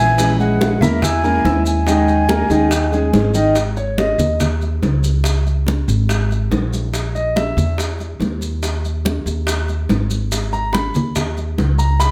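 Nostalgic and warm, this short cut from a longer Cuban son and guajira piece moves at 142 BPM in a straight 4/4. A breathy, mellow concert flute with vibrato and a crisp attack carries the melody in the opening seconds, over thumb-plucked classical nylon-string guitar, before both fall away by about 3.6 seconds. The clear, intimate concert grand piano, up front with audible action noise and long sustain, plays arpeggios from the start and then takes a solo in fragments through to 12.1 seconds. Underneath, a woody, growly pizzicato upright bass holds the low end throughout. Bright, damped congas played with hard hands sit close and dry, while tight, high-tuned bongos sound distant in a large room and grainy maracas add a soft texture. The harmony drifts from A#m7b5 and D#7sus4 through open fifths and a chordless passage to land on G#m, all wrapped in moderate studio reverb.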